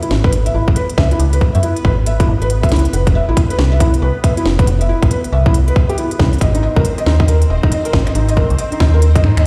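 A felt-muted upright piano opens with soft, intimate arpeggios through a digital delay, its action noise audible, alongside an overdriven organic electronic kit of finger snaps, crisp hi-hats and a woody snare, and a bubbling, detuned sawtooth texture with chorus sitting in the background, before a metallic FM bass enters up front at 0.1 s and a tight, overdriven electronic kick follows at 0.2 s, both drum parts ringing with the echo of a large stone room, in this glitchy, wistful IDM cut at 138 BPM with swung 16ths over C#m7, F5 and G#.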